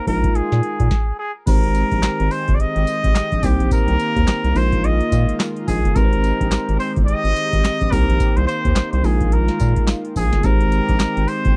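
A dry, close 1970s-style studio sound frames this bouncy, punchy R&B and new jack swing excerpt at 107 BPM with a swung 16th feel, where a booming analog drum machine with deep kick, crisp snare, metallic hats, handclaps, tambourine and crash sits up front over a round, dark analog bass, while a bell-like tine electric piano and a shimmering chorused pulse-width pad in the background support a nasal, breathy trumpet with straight mute playing a distant, jazz-style solo melody with scooped notes and light vibrato, and after a brief stop from 0.9 to 1.5 seconds the groove carries on over Abmaj7, Cm7 and Bb7sus4 chords.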